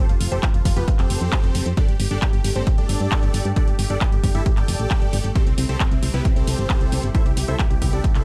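A straight 4/4 pulse at 134 BPM drives this soaring, driving uplifting trance passage, cut from a longer piece. A punchy electronic kick sits up front from 0.4 s, layered with a techno kit of handclaps and metallic hi-hats that carry a small-room character. Underneath, a solid FM bass with a round, dark, fast-decaying tone pumps against the kick. Huge, lush detuned supersaw chords carry the melody with a moving notch, a cassette-tape grit, tape echo and sidechain pumping, while a very quiet, silky analog string pad sustains chords beneath them with a slow attack, ensemble chorus and phaser. The harmony moves from Fadd9 to Gsus2 at 1.8 s and settles on C6, all in a dry, close-sounding mix with little reverb.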